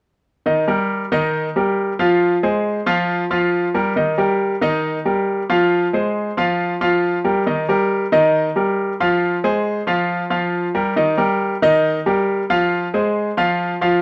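A clear, polished concert grand piano plays alone and up front, its deep bass and short sustain set in a moderate large-studio reverb, rocking between Ebadd9 and Fm chords in straight 4/4 for a danceable, sultry Latin feel in this passage cut from a longer piece.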